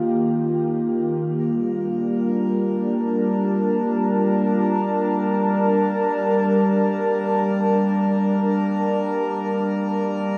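Ambient and free in time, this serene, luminous fragment of a longer piece opens on a warbly, nostalgic tape-like pad holding sustained chords up front, bathed in chorus and shimmer reverb, before a reedy, breathing hand-pumped harmonium drone fades in beneath it at 1.4 seconds as the harmony moves from Eb to Gm9, all set in a wet plate reverb.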